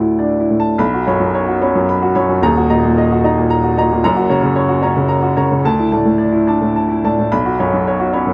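Neoclassical minimalist piano in 3/4 at about 110 BPM, this short fragment of a longer piece feels tender and intimate. A single upright piano plays alone from 0.0 to 8.3 s, its tone clear, woody and natural, reaching from D#1 up to B5. The beats fall unevenly with a rubato feel, so the pulse breathes rather than marching in strict time. The harmony moves through Dsus2, Bsus2, D#m and F# before circling back to Dsus2 and Bsus2, with the main passage starting at 0.8 s. The sound is dry and close, like a 1970s studio recording with the instrument up front, and the piano is tuned slightly above standard pitch at A4 = 441 Hz.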